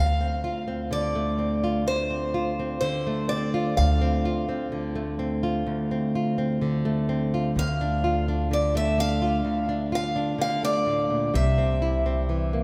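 In a straight 4/4 at 63 BPM, this slow, melancholic folk fragment in D minor, cut from a longer piece, aches with heartbreak as it moves from Dm7 to a rootless Bbmaj7/D at 7.6 seconds and settles on C at 11.3 seconds. A bright, picked acoustic archtop guitar carries the melody up front with audible finger squeak and a slapback echo, while a small, fingerpicked nylon-string guitar accompanies close by and a woody pizzicato upright bass with steel strings anchors the low end. All three play throughout, set in a vast, echoing cathedral space with a long, wet reverb tail.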